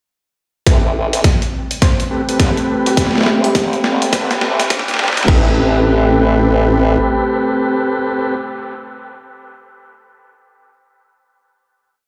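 A swung 104 BPM glitch hop groove in A minor opens at 0.7 seconds with a punchy, overdriven electronic kick and gritty, pitched-down boom bap sampler drums (high-tuned snare, closed hat and crash), driving a playful, funky build in which a wobbling formant-sweep bass, syncopated stabs from a lightly overdriven tonewheel organ with key click and dub echo, a deep detuned analog pad, a nostalgic warbly tape-like pad, a faint riser and short, woody wave-folded pluck phrases with phaser come together as the organ and the analog pad rise through filter sweeps, before the drums drop out at 5.4 seconds and the piece settles on a final Am9 chord from 5.3 seconds in a stone-room plate reverb.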